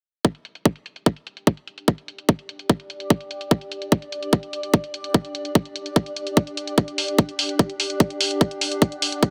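A tight, up-front electronic kick drives this intense, hypnotic psychedelic trance excerpt at 147 BPM in straight 4/4, locked in with a layered, low-passed electronic hi-hat from 0.2 seconds. From 2.5 seconds a blurred, evolving granular cloud pad pumps against the kick and fades in beneath a light digital ambience over a G5 chord, tuned to A4 = 441 Hz.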